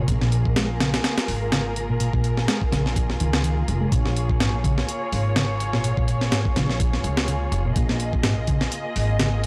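Veiled, muted strings hold a dark Bbm7 chord with soft-attack vibrato and a sidechain pump, while a round, punchy hollow-body electric bass plays a riff coloured by 12-bit sampler grit and tape echo. From 0.1 seconds a woody, gut-strung upright bass joins underneath, and an up-front, compressed breakbeat kit with a thumpy kick, medium-tuned snare and hi-hat sits in studio reverb. This funky, gritty breakbeat fragment is swung and has a dry, saturated cassette character and a small-room ambience.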